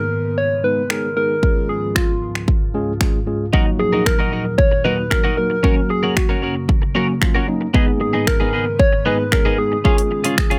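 A straight 4/4 dance-pop beat of punchy electronic kick, bright hi-hat and finger snaps arrives at 0.9 seconds in this confident, bittersweet passage cut from a longer piece, where a round, warbling FM synth lead with chorus carries the melody over a clean tine electric piano and a glassy, ethereal FM pad, both pumping with sidechain, before a twangy, compressed twelve-string electric guitar riff enters at 3.5 seconds, all set in light reverb.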